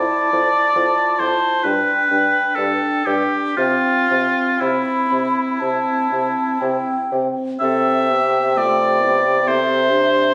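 From the first moment, a wind quintet plays together in this tender, lyrical slow romantic movement in C major: a pure, hollow flute with vibrato and a soft attack sings the melody over a close-miked, up-front oboe second line with light vibrato, a dark, smooth-topped French horn and a very quiet, mellow clarinet in accompaniment, and a warm bassoon bass with light vibrato, all moving through Fmaj7, G and C at a rubato 57-69 BPM in 4/4, set in moderate recital hall reverb as if captured on a phone in the room and cut from a longer piece.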